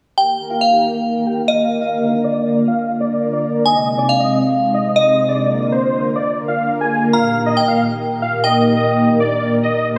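A huge, detuned supersaw carries the melody up front, with a low-pass filter sweep and dub echo running across the whole passage of this uplifting, euphoric trance piece at 138 BPM in Eb major. A crystalline FM bell with chorus, tremolo and tape echo plays a second line alongside it, while a silky analog string pad with ensemble chorus holds sustained chords through Eb, Bb, Ab, Bb and Eb/Bb. A lush hall reverb gives the cut-out passage a spacious sheen.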